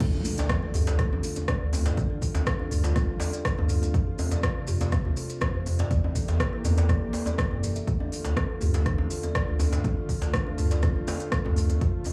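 Afro house at 122 BPM in D minor, this driving, earthy drop cut from a longer piece opens with a background electronic impact and rides a punchy, up-front electronic kick, a deep house kit with smooth hats, crash, rim click and toms, a deep acoustic djembe, grainy maracas and a round sine sub bass, while a mellow, detuned sawtooth pad with chorus and a woody kalimba with analog delay pump to the sidechain alongside a dry, buzzing marimba melody that enters at 0.7 s, all moving through Dm, F and Edim in light small-room ambience.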